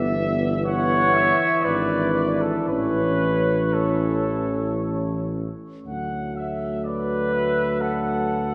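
A distant, mellow trumpet section carries the melody from the start over a dark trombone, a mellow euphonium in the background and a mellow, soft-attacked tuba bass up front, in a lyrical, tender hymn-like classical brass band excerpt in D major. It moves in a slow, rubato 3/4 at around 55-65 BPM. A clear, vintage-toned flugelhorn with light vibrato enters at 0.7 seconds with a prominent second line, and later the harmony settles from A onto D inside a wet church reverb.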